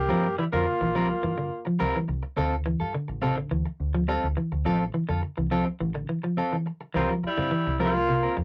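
Funky and joyful, this short afrobeat excerpt opens with a brilliant, up-front trombone melody shadowed by an edgy, punchy alto saxophone line, both sounding briefly before returning at 7.0 seconds, while a round, foam-muted fingered bass, a hollow-body guitar playing clean arpeggios and a dark, picked guitar throwing stabs carry the groove over C7sus4 and Dm7 in a rough rehearsal-room recording with tube saturation and a short, wet booth ambience.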